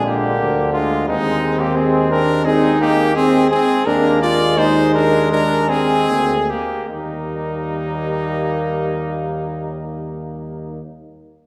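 A dark, softly attacked trumpet with light vibrato carries the melody up front in this stately, warm-hearted classical brass quintet excerpt in Eb major, played rubato in 4/4 at around 73-89 BPM and slowing through its first 6.9 seconds before settling on an Eb chord. Behind it, a mellow, smooth-topped flugelhorn sings a second line while a mellow trombone with light vibrato and a vintage-toned French horn fill out the harmony, all set further back, and a warm tuba anchors the bass. The whole group sounds as if heard from deeper in a recital hall, its wet reverb lingering around the five voices from start to finish at 10.8 seconds.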